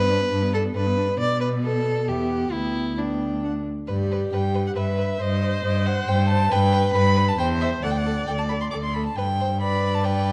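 Cheerful and spirited, this quick classical-period movement for string quartet in triple time features a dark, intimate first violin carrying the melody with a soft-attacked sul tasto tone and light vibrato. Beneath it, a smooth, even second violin plays a second line, a rich viola with vibrato supplies accompaniment, and a close cello sits up front on the bass. The harmony breaks off briefly at 3.4 seconds before a new section begins at 3.9 seconds, and a minor colouring follows at 5.2 seconds, all set in a moderate recital-hall reverb with a dusky, mellow production.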